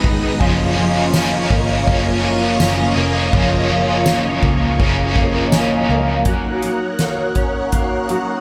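At a relaxed 82 BPM in a straight 4/4, a soft-mallet drum kit sets an unhurried pulse across hi-hat, kick, snare, ride cymbal and tambourine, its boomy kick and fat snare rounded off by mallets on drums and cymbals alike. This short dream pop excerpt feels ethereal and hazy, resting on a Gbmaj7 before shifting to Ebm7 at 6.3 seconds. A fingerpicked twelve-string acoustic guitar carries shimmering, octave-doubled arpeggios with audible finger squeak, its full-bodied tone washed in ensemble chorus and digital delay, while a phased string machine holds swirling sawtooth chords with a slow attack. A crunchy, double-tracked overdriven electric guitar adds bright accompaniment through harmonic tremolo and subtle chorus until 6.8 seconds, and a foam-muted, round vintage electric bass anchors the low end until 6.2 seconds. A very quiet FM synth bell glints with pure, decaying tones during the first 3.0 seconds, all placed in a wet booth ambience.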